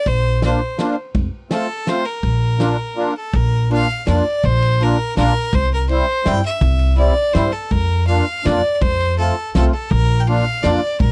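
A lively tune in 3/4 at 165 BPM with a straight feel sets this festive, jolly alpine folk dance piece in Bb major, cut from a longer piece. An intense, clear fiddle carries the melody with light vibrato over a sweet, reedy accordion with light tremolo tuning, a woody pizzicato upright bass on steel strings, and a loose drum kit with punchy kick, fat snare, dark cymbals and a gritty, saturated, rolled-off sound. The dry, close 1970s-style studio sound keeps fiddle, accordion and bass up front, and a brief break at 3.0 seconds leads into the second section at 3.3 seconds.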